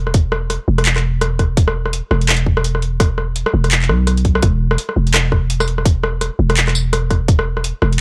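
A dry, gritty hardware recording with little reverb opens this short, tense and dark cut from a longer half-time drum and bass piece, running at 168 BPM in 4/4 with a swung sixteenth-note feel tuned to A4 = 444 Hz. A growling 808-style bass starts at 0.0 seconds and holds the low end between E1 and B1, its buzzy, sine-based tone striking with a fast attack before decaying, placed up front. From 0.1 seconds an electronic drum kit joins with handclaps, hi-hat, rim click and tambourine, its metallic hats layered and re-recorded in a small room. An electronic kick drum, tight and up front, enters alongside it, also layered and re-recorded in a small room, and drops out at 7.4 seconds while the bass and kit carry on to the end. The kick sits loudest in the balance, giving the groove its forward weight.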